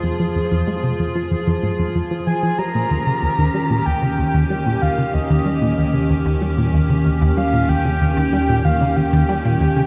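A dark, warm mix bathed in a wet concert-hall reverb gives this ambient, sequencer-driven space music an expansive, cosmic feel in a straight 4/4. From the first moment, a plucky analog bass drives the riff with a punchy, funky blend of sawtooth and pulse wave, its decaying filter pluck and moving notch colored by a filter sweep, ensemble chorus and tape echo. Up front, an evolving wavetable pad holds sustained chords in a morphing, vintage sine tone with slow attack and long release, softened by chorus, built-in reverb and shimmer reverb. Far behind it, an analog drone fades in, a detuned, warbling mix of sawtooth and pulse-width-modulated pulse wave treated with chorus. At 2.3 seconds a soft, octave-layered synth lead enters with a full, round melody of triangle, sub octave and wave-folded sine, mellow with vibrato, chorus, shimmer reverb and tape echo. The harmony moves from F minor to Eb7 in this short cut from a longer piece.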